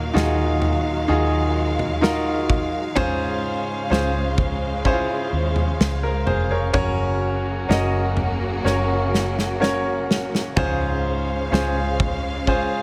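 Set in a steady, straight 4/4 at a slow 63 BPM, this tender pop ballad in D-flat major unfolds as a heartfelt fragment of a longer piece. A bright concert grand piano sits up front with a brilliant, smooth tone and deep bass, carrying the accompaniment through chords that move from Ebmadd9 to Dbmaj7, on to Gb, and back to Dbmaj7. Behind it, a lush, distant string section holds sustained bowed chords, its ensemble sound shaded by expressive vibrato and portamento. A vintage fingered electric bass, foam-muted and amped, supplies a dark, round low end, while a natural country drum kit in a small room joins at 0.2 seconds with a punchy kick, medium-tuned snare and toms. The drums play a fill from 8.6 to 10.6 seconds, and light studio reverb softens the whole blend into an intimate, emotional setting.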